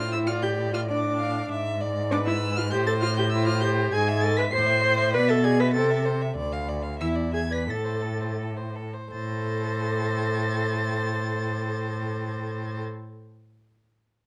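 A string quartet starts together in a quick classical-period movement in A minor: the first violin sings high and distant with expressive vibrato and portamento, while a clear, close second violin traces a smooth, even line beneath it. The viola and cello, both full-bodied with vibrato and smooth, even bowing, carry the accompaniment and bass, the cello sitting up front, and the quartet moves in 2/4 at 82-100 BPM with a restless, urgent rubato. The pulse slows from 5.8 to 9.1 seconds as the harmony settles on A minor, and a brief new section begins at 9.1 seconds in this dark, lightly reverberant recording cut from a longer piece.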